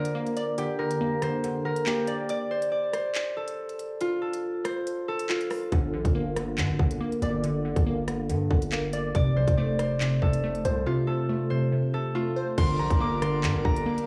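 Drill hip hop with an ominous, cold mood, moving in a half-time feel across this short cut from a longer piece. A bright, ringing concert harp carries the fingerpicked melody up front, colored by cassette tape and tape echo, while a glassy, crystalline wavetable pluck with chorus and a detuned, ring-modulated edge supplies the accompaniment, dropping out at 2.3 seconds and returning at 5.7. The electronic drill kit sits forward with a hard-clipped kick, crisp hats, handclaps, rim clicks and crash cymbal, and at 5.7 seconds a distorted, saturated 808-style bass arrives with a heavy, aggressive weight and fast, decaying notes. The chords move between G minor and F, and at 12.6 seconds a majestic full pipe organ with brilliant mixtures enters on sustained chords in a romantic voicing. The whole piece has the grainy character of a home cassette recording in a small room, touched with light digital reverb.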